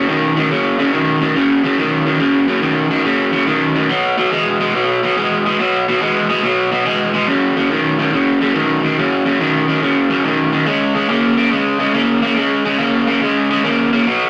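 Laid-back and gritty, this swung 142 BPM blues in F# major, cut from a longer piece, features a lone bright, overdriven electric guitar, picked and up front, moving through F#5, B5, F#5 and C#5 power chords across 14.3 seconds in a wet studio reverb.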